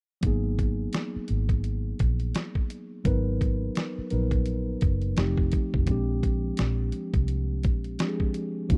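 Sultry and soulful, this short excerpt cut from a longer piece is a slow neo-soul R&B groove at 85 BPM in 4/4, with a 16th-note swing feel and a G# dorian color, tuned slightly sharp to A4 = 441 Hz. A mellow tine electric piano carries the accompaniment in a clean, direct voice between F3 and B4, sitting on a G#m9 chord before moving to F7 at 5.2 seconds and A#13 at 5.9 seconds. Beneath it, a vintage fingered electric bass plays in the low register from F1 to D#2, its foam-muted tone dark, round and punchy through an amp. The sampler-style drum kit brings hi-hat, a thumpy kick and a fat snare, sounding gritty and compressed, with the character of having been re-recorded in a large room. All three parts play together from 0.2 to 8.8 seconds, each placed up front in a dry, close mix that recalls a 1970s studio.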